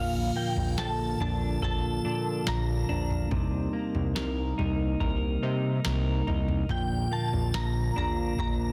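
A fat, saturated analog bass with detuned sawtooth weight sits up front in this blissful, ethereal dream pop fragment at 71 BPM in Bb major, under a clean, picked electric guitar playing arpeggios through subtle chorus and digital delay, soft flute-like tonewheel organ chords turning in a slow rotary speaker, a shimmering FM bell melody with chorus, tremolo and delay trailing a long halo, and a booming analog drum machine with deep kick, tonal snare and toms that enters at 0.6 s, all moving through Bbmaj7 and Cm7 in light reverb under a dense, heavily limited modern master.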